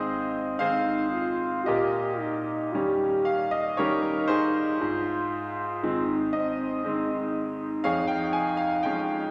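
Classical romantic music for French horn and grand piano, this lyrical short excerpt moves in a slow 3/4 at 56-61 BPM with a flexible, rubato feel in Ab major, tuned to A4 = 439 Hz. The French horn carries the melody from start to finish in a middle register between C4 and G4, its tone warm with a smooth top, played in a classical solo style. The grand piano accompanies throughout, spanning F2 to Ab5 and sitting slightly louder and up front, with a bright, brilliant, natural sound and long sustain. The harmony rests on Ab, moves to Eb7/Bb at 1.7 seconds, returns to Ab at 4.8 seconds, and settles on Db/F at 7.8 seconds. A wet scoring-stage reverb with a 1.5-second decay surrounds the pair, lending the nine-second passage a spacious, warm glow.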